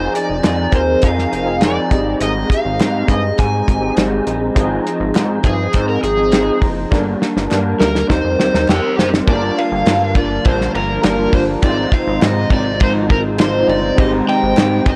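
Indie and bedroom pop in F dorian at 102 BPM, mellow and lonely, this excerpt sets an up-front overdriven slide guitar melody over a lo-fi, slightly broken-up electric guitar with warbly pitch drift, round detuned analog keys with a cassette-tape haze, and a glossy, evolving chorused synth bass. A cloth-damped, thuddy drum kit with dark cymbals and a tight kick sits close, faint crisp handclaps join at 0.4 seconds, and a fill runs from 6.9 to 9.3 seconds before a silky, very quiet string machine rises in at 9.6 seconds on chords moving from Gm7 to Abmaj7. The whole has a dry, gritty hardware sound with light reverb.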